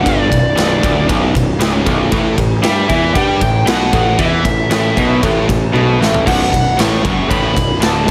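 A high-gain lead guitar carries the melody in its upper register from the opening moment, over three distorted rhythm guitars and a fuzzed, growly picked bass that all start together on a B minor chord. This heavy metal passage, cut from a longer piece, moves at a straight 116 BPM in 4/4 and feels epic and dark. Two of the rhythm guitars are bright, high-gain and set in the background, while a third, double-tracked and overdriven, sits very quietly beneath them, all playing low riffs. An acoustic rock kit joins at 0.1 seconds, up front and natural in a big room, with a punchy kick, medium-tuned snare, toms, and bright crash and ride cymbals. The harmony shifts to A5 at 2.1 seconds, and a drum fill from 5.7 to 6.3 seconds brings it back to B minor, all under a light reverb.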